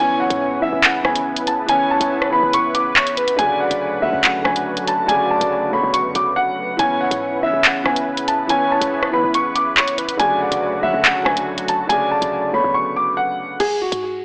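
Ominous and tense, this half-time drill excerpt at 141 BPM in C# phrygian sets an up-front dark baby grand piano melody with delay against a breathy, flute-like synth lead with vibrato, a felt-muted upright piano with audible action noise, a detuned sawtooth analog pad and a punchy 808-style bass sitting in the background, while an overdriven drill kit with bright hi-hats, handclaps, rim clicks and crash drives from 0.3 s. A very quiet impact opens the piece, brief breaks arrive at 6.4 s and 12.8 s over C#m7 and Dmaj7 chords, and the whole mix carries an AM radio character inside a lush hall reverb.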